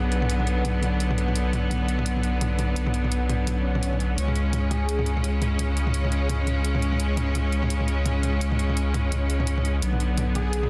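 A dense, heavily limited modern master with light digital reverb carries this dark, spacious half-time drum and bass fragment at 170 BPM, swung on the 16ths and moving from B minor to a C#5 chord and back. Bright, intense bowed strings hold sustained chords up front beside a deep, thick saturated sine sub bass, while an overdriven, layered electronic kit with bright hats and toms sits in a studio ambience. A background electronic swell appears at 3.6 seconds, and an airy, dreamy detuned lead with chorus, vibrato and dub echo drifts in briefly at 4.7 seconds and again near the close.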